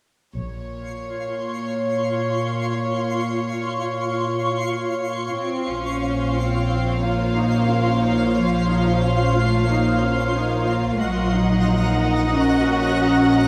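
Cinematic suspense film score with an eerie, uneasy mood, cut from a longer piece, where a violin section plays a floating, pure melody sul tasto over a rich cello section and a twinkling granular texture whose sparkling, octave-up shimmer carries its own built-in reverb. The double bass section sounds briefly at the start, then returns at 5.7 s alongside a second violin line, and a dark, woody viola section with vibrato joins in the background at 7.0 s. The strings sit in a wet scoring-stage reverb with a dark production, the harmony moving from Bbmadd9 to Ebm7/Bb at 11.0 s.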